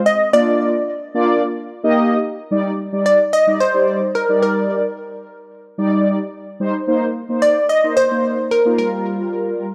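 A dry, gritty recording with light reverb and a digital ambience frames this short, upbeat pop passage, cut from a longer piece, moving at 110 BPM in a straight 4/4 in Eb major. A glassy wavetable pluck carries the melody from 0.1 seconds, its crystalline, detuned tone edged with a noise layer, ring modulation, a filter sweep and a moving notch, softened by chorus and a tape echo. Just behind it, at 0.3 seconds, a mellow synth brass takes up the accompaniment with a round, dark, sawtooth body, brassy sustain, vibrato and its own chorus. Both parts sit up front in the mix, giving the carefree mood a close presence. The harmony opens on Bb and Eb before settling into Ebmaj7 at 2.5 seconds, then moves through Cm7 to Gm7 as the passage closes near 9.7 seconds.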